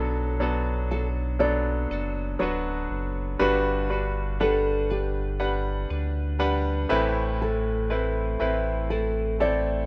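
A heartfelt, tender pop piece in G major, straight 4/4 at 60 BPM, opens with all four parts together: a dark, full-bodied, thumb-plucked nylon-string guitar carries the melody over a brilliant, polished concert grand piano accompaniment and a deep sine-and-triangle sub bass with an added octave, the piano and bass both sitting up front. In the background, a clean, twangy twelve-string electric guitar picks compressed arpeggios as the chords move from Bm7 to Gmaj7 at 3.4 seconds and Amadd9 at 6.9 seconds. Cut from a longer piece and tuned to A4 = 439 Hz, the recording has the feel of a rough home demo mix with light reverb.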